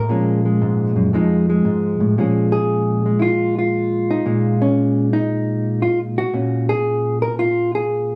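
Moody and cool, this short solo jazz fragment swings easily in 4/4, cut from a longer piece. A clean, dark hollow-body electric guitar sits up front, fingered and compressed, moving through Bbm7 and F7#9 before settling back on Bbm7 at 2.2 seconds. A small room ambience and wet studio reverb give the close, intimate sound a little air.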